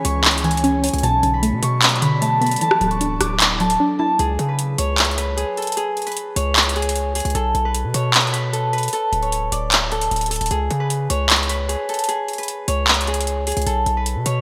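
A melancholic, dark trap beat opens with everything at once: a bright, fingerpicked Celtic harp carries the ringing melody with a delay trailing its notes, while a soft, round pluck with a chorused, detuned edge and an ethereal, airy pad sitting in the background fill in the harmony over C#m, Bm7 and Dadd9. Underneath, a punchy, heavy 808-style bass with a fast attack and decaying tail holds the low end, and an overdriven trap kit of handclaps, metallic hi-hats and rim clicks sits up front in a half-time feel, its gated reverb giving the hits a clipped snap. After a short break from 3.8 to 4.2 seconds, the pluck and pad drop away, leaving harp, bass and drums to carry the second section over starker C#5, Aadd9/B and D5 chords. The harp stays prominent throughout, its acoustic tone set against the electronic, produced drums. A moderate, lush hall reverb and a bright 1980s-style digital sheen frame this excerpt, which is cut from a longer piece.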